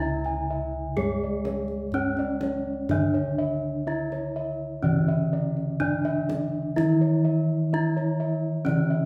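Stately and shimmering, this Javanese gamelan passage, cut from a longer piece, sets an up-front, close-miked bronze metallophone carrying the melody with a dry, ringing wooden-mallet attack and the shimmering beats of paired tuning. Beneath it, a second metallophone plays a mellow accompaniment with padded disc mallets and a vintage, band-limited tone. Bossed gongs add round, softly beating arpeggios up high and a dark, smooth bass, while a deep kendang sits in the background from 0.2 to 8.9 seconds, the whole ensemble playing live in one room with a lush, large studio reverb.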